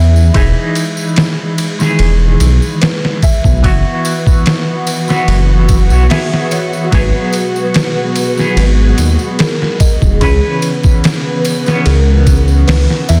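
Trip hop with a hypnotic, brooding mood, cut from a longer piece, built on a deep, rumbling detuned saw bass and gritty, pitched-down sampler drums with a thumpy kick, both up front, while a tambourine sits in the background from 0.2 seconds. A clean, picked electric guitar through an envelope filter plays accompaniment with tremolo and tape echo over veiled, muted strings holding sustained chords, and a delicate, tinkling music box adds arpeggios in the background. At 6.9 seconds a pure, breathy sine lead enters with chorus and tape echo, carrying the melody with a soft attack over the chords as they move from G#m7 to C#m7, in a dense, heavily limited modern master.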